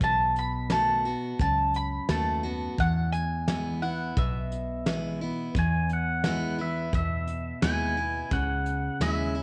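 Nostalgic and sunny, this short cut of honky-tonk and classic country moves at an easy, straight four-beat pace over a B7, E and C#m progression. A mellow, round mandolin carries the melody up front with its doubled strings ringing, until it drops out at 5.2 seconds. Beneath it, a bright, full-bodied dreadnought acoustic guitar is picked close to the ear, while a vintage foam-muted fingered electric bass adds a dark, punchy low end. A soft brush kit of hi-hat, kick and fat snare sits in a studio room with a rolled-off top. At 5.6 seconds a clean, twangy pedal steel guitar takes a solo, played with fingerpicks and slide, with compressed volume swells, all under a light small-room reverb.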